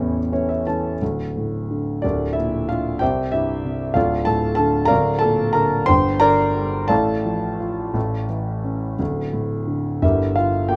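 A concert grand piano opens with a brief fill in the first second, then settles into a lyrical solo passage that runs to 10.8 seconds, a short fragment cut from a longer classical piece. The mood is dark and melancholic, unfolding in a lilting 6/8 with a free, rubato feel that lets the phrases breathe. The piano's tone is mellow and vintage, with a deep bass reaching down to a low D and the sound of its action audible beneath the notes. Placed up front in a small room with moderate reverb, it has an intimate, close presence. The harmony moves through somber minor-key changes, circling back toward its home chord near the end before turning once more as the passage breaks off.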